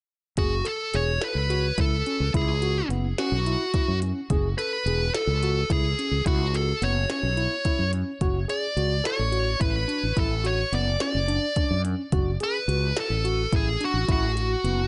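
A dark, overdriven lead guitar carries the melody up front, its picked tone smoothed by plate reverb and tape echo as it sings through this brooding, driving passage of progressive instrumental music in 7/8. Beneath it, an overdriven tine electric piano plays arpeggios with a barky, gritty bite, as though heard through a combo amp, and it shares the guitar's plate reverb and tape echo. A fretless electric bass sits close and direct, growly and warm, anchoring the low end. The drums are a minimal electronic kit with a soft kick, tiny snare and clicky hats, given a tape-tinged character and the air of a large room. All four parts play together from 0.4 s to the end of the cut, which is lifted from a longer piece, with the harmony shifting at 8.2 s under a light overall reverb and a dark, rolled-off top end.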